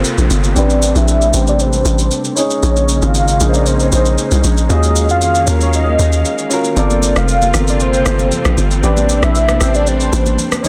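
A velvety, detuned synth lead carries a late-night amapiano melody at 116 BPM, dressed in chorus, tremolo and digital delay, over a boxy grand piano, lush bowed strings and a hollow, bouncy log drum bass sitting up front, while a faint downlifter sounds until 2.6 seconds. An overdriven electronic shaker and rim click keep the 4/4 pulse, and ringing, high-tuned congas join in the background at 6.8 seconds as minor eleventh chords drift from Gm11 through Bbm11 and Ebm11. A filter sweep runs across this hypnotic passage, held in a dense, heavily limited master with digital ambience.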